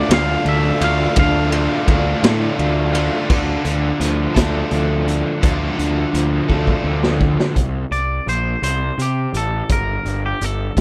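Indie rock in a straight 6/8, moody and restless, cut from a longer piece: a twangy, clean lead guitar sits up front with subtle chorus and tape echo, while a very quiet, swirling phased string machine holds sustained chords until 3.3 seconds. Two overdriven guitars play riffs until 7.6 seconds, one biting with tremolo and set in the background, the other crunchy with chorus and tape echo. A fuzz-drenched picked bass sits up front over a raw garage drum kit with a pumping small-room sound, punchy kick and rolled-off top, which plays a fill before the final section, all in a dry mix.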